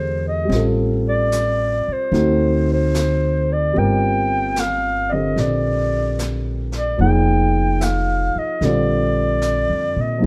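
A breathy, whispered clarinet with light vibrato and scooped notes carries the melody up front in this romantic, intimate jazz ballad excerpt at 74 BPM with a swung feel, over a warm grand piano, a woody pizzicato upright bass and a brushed drum kit that enters at 0.5 seconds and sits low in the mix, all framed by light reverb and a dark production.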